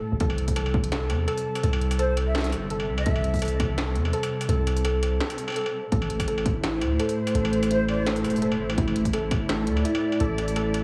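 Dark and cinematic, this half-time drum and bass excerpt moves with a light swing. A woody, lush cello section holds bowed chords with vibrato, and sidechain pumping makes them breathe, while a deep, up-front 808-style sine bass sustains beneath with tube saturation. A warbling, lo-fi pluck with a detuned, square-and-sawtooth edge spins arpeggios through chorus and dub echo. From 0.2 s, a heavy electronic kick lands sparsely against an industrial kit of clanging snare, crisp hats and struck metal, both re-recorded in a large room. A breathy, hollow jazz flute drifts in at 2.0 s and again at 7.7 s, distant and gritty from a vintage 12-bit sampler and trailed by digital delay. The overall sound is heavily compressed, like a radio, with small-room ambience and light reverb.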